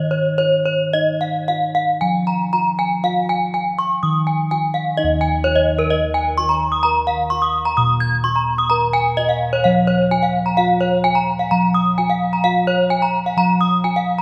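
Deep, round bossed gongs open this brief, ceremonial cut from a longer Balinese gamelan piece in Eb slendro at 109-129 BPM, and a bright, ringing bronze metallophone joins at 0.1 seconds with up-front arpeggios whose paired tuning gives them a shimmering beat, the gongs holding the bass beneath it before a new section arrives at 5.0 seconds, all set in a lush concert-hall reverb.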